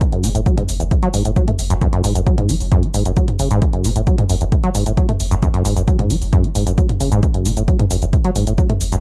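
This short cut from a longer piece of driving peak-time techno opens at once with a squelchy, resonant sawtooth acid bass riff, an up-front punchy electronic kick and an analog drum machine playing hi-hat, shaker and toms, all in a straight 4/4 metre with a hypnotic pull. The acid line sits forward in the mix with fast attacks, decaying notes and a filter sweep, coloured by tape echo and sidechain pumping. At 0.2 seconds a deep, thick sub bass joins on a single low note, its triangle tone overdriven, sustained and darkened by a low-pass filter as it pumps beneath the riff. The drum machine's hats, percussion and toms also breathe with sidechain pumping, while the kick and drum machine carry a tape-warm, analog character. The whole passage has the grainy feel of a home cassette recording with light reverb, and the kick drops out at 8.7 seconds just before the cut ends.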